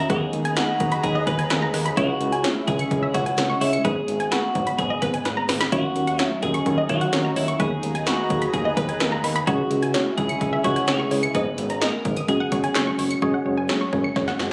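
Synth-pop in G# minor at 128 BPM, this cool, nocturnal fragment of a longer piece moves in a straight 4/4 over chords such as G#madd9/D#, C#m, D#m7 and F#sus2. A bright, twangy twelve-string electric guitar carries the melody with slapback echo until 12.9 seconds, while a lush, detuned unison pluck plays sawtooth arpeggios high above, also touched by slapback echo. Behind them, a worn, slightly out-of-tune tine electric piano gives accompaniment with medium tremolo through a combo amp, and a thick unison pad with slow attack and chorus holds sustained chords in the background. A fat, saturated analog bass with a nasal, evolving tone anchors the low end, and up-front 80s electronic pad drums bring a punchy kick, gated snare, metallic hi-hats and handclaps from 0.1 seconds, with fills at 5.3 and 14.2 seconds. Captured on a phone in the room, the sound is compressed and bathed in club and plate reverb, giving the track an after-hours haze.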